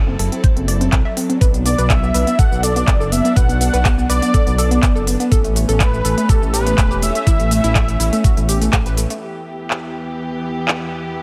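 A straight pulse drives this expansive, bittersweet progressive house excerpt, with a knocking, up-front electronic kick and a crisp-hatted pop kit of handclaps, hi-hat and shaker, while a deep, rumbling detuned saw bass, saturated through tube warmth, pumps against the kick beneath dark, sul tasto chamber strings holding sustained chords. A crystalline wavetable pluck spins arpeggios through chorus and dub echo under a filter sweep until 9.2 seconds, and from 1.7 seconds a thick, nasal, warbling unison lead with vibrato carries the melody, also trailed by dub echo. The mix is dry and close, and once the arpeggio and bass fall away the strings settle onto E minor at the close.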